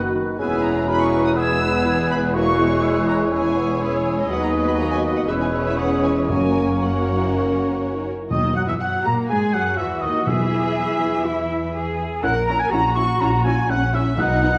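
In a straight, quick 4/4, this spirited, cheerful classical-period orchestral movement, cut from a longer piece, sets muted, veiled violins on the melody over a second violin line, lush con sordino violas, and dark cellos and double basses on the bass, all bowed with vibrato. A hollow, airy flute ensemble, a clarinet, a mellow bassoon and loose French horn chords sit in the background of the opening, while a distant, roomy oboe carries on to the end. Timpani struck with hard mallets enter at 6.3 s, articulate and dry, shortly before the orchestra moves into a new section at 8.3 s within a reverberant recital hall.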